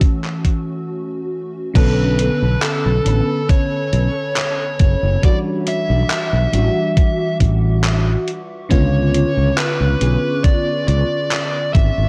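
A dry, cassette-worn sound gives this short excerpt of slow, melancholic vaporwave a woozy, faded glow, moving at 69 BPM in B minor with a light swing on the sixteenths and tuning that sits just under standard pitch. From the start, a lush FM electric piano with a soft pad layer and tape echo plays the accompaniment, while a warbling, lo-fi pad with chorus and reverb holds mellow sustained chords in the background, and a thumpy, sampler-style kick sits up front beside a gated 80s drum machine carrying crash, handclaps and hi-hat. After a brief break from 0.9 to 1.8 seconds, a growly fretless electric bass with tube saturation and a picked fuzz lead guitar with distortion and tape echo enter at 1.8 seconds, the guitar carrying a compressed melody in a narrow upper range. The harmony drifts from F#m7 through Bm9 and Em9 to a tense C#7b9, keeping the mood hazy and nostalgic. The drums carry a gritty 12-bit edge and the sound of a small room, and they stop at 11.9 seconds, just before the other parts finish.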